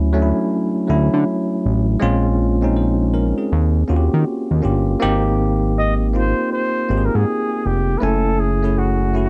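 A bell-like tine electric piano and a fat analog bass open this introspective, soulful neo-soul R&B excerpt at 80 BPM with a swung 16th-note feel, moving from Dmaj9 through to F#m7 before a veiled, breathy trumpet with bucket mute and slapback echo enters at 5.8 seconds, heard in a dry, close 1970s-style studio recording.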